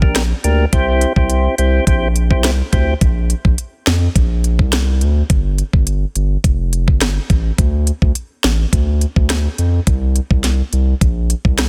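A dry, dense and heavily limited mix opens this bouncy, summery dancehall cut at 105 BPM in Bb major, where a mellow, round percussive tonewheel organ with third-harmonic percussion and a slow rotary speaker comps over Gm and C until 2.9 s, while a deep, thick, saturated sine sub bass and an up-front electronic island pop drum kit with knocking kick, sharp snare, rim clicks and smooth hi-hats carry on through 11.7 s across Fsus2 and Bbsus2 chords.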